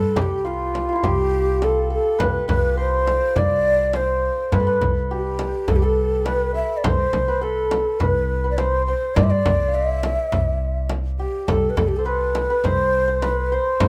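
A modest small-room ambience surrounds this short section of a Persian modal ensemble piece, cut from a longer performance in the dastgah mahur on C, tuned to A4 = 438 Hz. At a straight 103 BPM in 4/4, the mood is passionate and warm. The end-blown ney carries the melody up front with a breathy, hollow tone and vibrato. The hammered santur plays a second line with a bright, shimmering ring. Beneath them, a pizzicato upright bass on gut strings gives a woody, thumpy foundation close to the listener. At 0.2 s a deep frame drum, close and dry under hard hands, joins a tight tombak set back in the room, and both play through to the end at 13.9 s.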